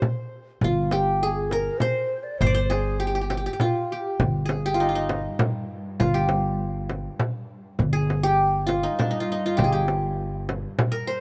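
Lightly reverberant and intimate, this melancholic, hypnotic Arabic maqam ensemble piece in three, cut from a longer work, sets a bright-edged, plectrum-plucked qanun melody up front over a close, dry small frame drum and a woody, thumpy pizzicato upright bass entering at 0.6 s, while a breathy, hollow ney with vibrato traces a second line in the background until 4.2 s, after which a veiled, muted cello section holds a very quiet bowed drone.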